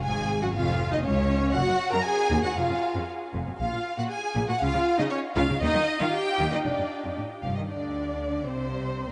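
A vast, echoing cathedral reverb with a long 5.4-second decay surrounds this short string-orchestra passage, cut from a longer classical-period movement, its top end softened so nothing rises above 10.3 kHz. The music is quick and stormy at 118 BPM in a straight 2/4, with a restless mood carried by harmonies that move through Db, Gb and Eb colours before settling toward F/A and a closing Csus2. A close, expressive chamber violin section takes the melody, bowed with vibrato, while a lush symphonic violin section shares the same register in the background as a smooth-topped second line. Up front, the viola section supplies a smooth, even accompaniment. Underneath, a focused studio cello section and a chamber double bass section, both bowed with vibrato, form the bass, the basses reaching down to F1. All five sections play throughout the 9.1 seconds, with a brief new section beginning at 7.7 seconds.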